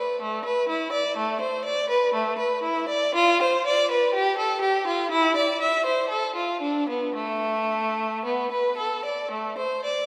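Classical, in the manner of a baroque-style suite movement, this serene and radiant passage, cut from a longer piece, features a single unaccompanied violin played with vibrato, its rich, smooth tone and even bowing sitting up front in 4/4 with a freely flowing rubato, tuned slightly below standard pitch, while a long church reverb places the listener further back in a resonant space.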